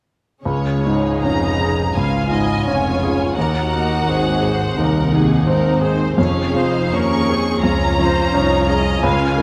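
A clear grand piano carries the melody up front in this passionate, lyrical romantic movement for piano and orchestra, its intimate, polished tone close enough that the action noise of the instrument is audible. The piece moves in a flexible rubato, and a violin section shares the melody high above, sounding focused and somewhat distant with a lush vibrato. From 0.4 seconds a close viola section fills in the accompaniment with a rich, bowed sound, while a dark, woody cello section and a double bass section sitting in the background supply the bass. A second violin line joins at 2.0 seconds, adding another vibrato-laden ensemble voice beneath the melody. The harmony settles on the home chord, moves to a dominant seventh at 3.4 seconds, and returns to the tonic over a different bass note, all heard in a moderate recital hall reverb in this fragment cut from a longer piece.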